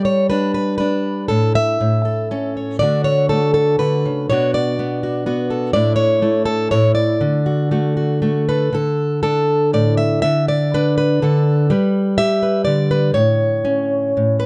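A plugged-in steel-string acoustic guitar, fingerpicked up front with a warm concert tone, carries this gentle, pastoral folk fragment on its own in a loose, rubato three-four lilt, moving through G, A, D, Bm7 and Asus4 before a second passage from 8.7 seconds turns to D5, G and A, captured by close, detailed microphones with little reverb.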